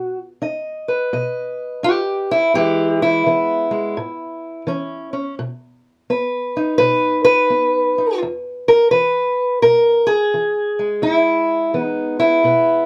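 A close, detailed recording with light reverb captures a dark, boxy parlour steel-string acoustic guitar, fingerpicked and up front, playing soulful, swaggering acoustic country blues in E major at 85 BPM with a swung 4/4 feel, moving through B, E, A and back to B before settling on E at 8.2 seconds in this short cut from a longer piece.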